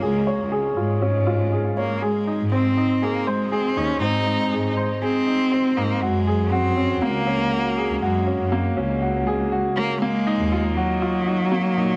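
A light reverb surrounds this short cut from a longer piece of piano and strings electronica, with a solo cello and an upright piano placed up front. At 120 BPM in a straight 4/4, the mood is tender and hopeful, and the harmony moves through Db, Ab, Gbadd9 and Ebmadd9. The clear, woody upright piano plays a riff from Bb3 to Db5 for the full 12 seconds, shaped by a low-pass filter that sweeps throughout and by tape echo. A single bowed cello carries the melody between Gb3 and Eb4, its nasal, slightly boxy tone made expressive by vibrato, portamento and its own tape echo. Beneath them, a studio cello section bows the bass line from Db2 to Bb2 with a warm, focused ensemble sound and a smooth top, sitting a little lower in the mix.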